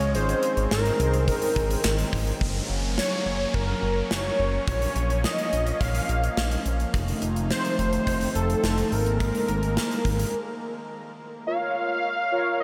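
A synth-pop fragment cut from a longer piece, driving yet melancholic, set in a straight 4/4 and drenched in a dreamy, cavernous reverb. A thick, bold unison lead carries the melody up front with vibrato and tape echo, while a swirling phased analog pad holds sustained chords beneath it with slow attack and long release. A glossy, dark chorused synth bass anchors the low end, and a gated 80s drum kit of kick, snare, hi-hat and handclaps rings in a bright stone room with a tight kick and polished sheen. A mellow, round synth brass with ring modulation and a filter sweep appears only briefly, at the very start and again from 11.5 seconds, and an electronic downlifter drifts in the background between 2.4 and 6.9 seconds. The chords move from Ab through Gb, Bbm, F7 and Absus2 before returning to Bbm, with a break at 10.3 seconds where the drums and bass drop out and the lead and pad carry on, before the lead and brass carry the close.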